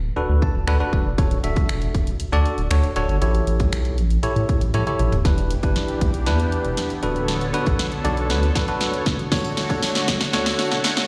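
A deep, saturated sub bass opens this bittersweet yet confident dance-pop passage, quickly joined by a barky, bell-like tine electric piano with slapback echo, the two pumping to the sidechain, and a punchy, layered house drum kit of kicks, snares, hi-hats, snaps and toms, before a lush, warbling, detuned unison pad arrives with chorus at 5.2 seconds as a build-up and filter sweep begin and a jingly tambourine sits in the background from 9.3 seconds, the whole captured like a live gig heard through a venue's PA with recital hall reverb.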